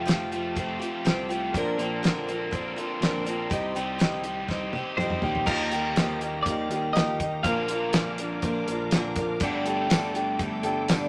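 Dusty and reflective, this folk rock and heartland rock excerpt moves at 122 BPM in a straight 4/4, built on an up-front, woody, boxy acoustic archtop guitar with old strings, a crunchy double-tracked overdriven electric guitar riff, a growly picked bass, and a dry, damped 70s drum kit with a fat snare, tight kick and dark cymbals that plays a fill at 4.5 seconds, while a very quiet, reedy, bright tonewheel organ holds sustained chords through a slow rotary speaker, a clean, compressed twelve-string electric guitar carries the melody from 5.0 to 8.4 seconds, and a jingly tambourine slips in at 9.9 seconds, the mix sitting in a moderate studio reverb.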